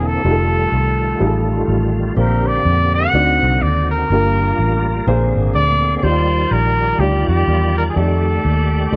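Set in a light reverb, this soulful, reverent excerpt of uptempo gospel swings at 124 BPM in Bb major, tuned slightly flat with A4 at 435 Hz. An up-front trumpet with vintage vibrato carries the melody, while a reedy, bright tonewheel organ with key click holds sustained chords through a slow rotary speaker and chorus vibrato, and a round, punchy, foam-muted electric bass anchors the bottom. A woody, mellow upright piano joins at 0.2 s for accompaniment as the harmony moves from F9 through D7b9, Gm9 and Ebmaj9 to a closing F13.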